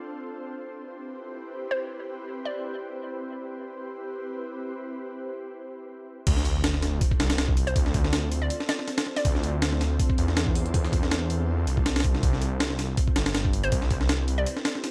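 A swung, gritty breakbeat kit with a thumpy kick and high-tuned snare crashes in at 6.3 seconds alongside a menacing, detuned saw bass and a background sub drop, turning this frenetic, atmospheric drum and bass and jungle excerpt from calm to driving after a brief stop at 5.9 seconds. From the start and throughout, an ethereal, airy pad holds sustained chords in a roomy chorus wash, while a hollow, bouncy square pluck drops short melodic phrases through dub echo. The drums and thick, beating bass sit up front, moving from Cmaj7 to Dm7 and back under light digital ambience.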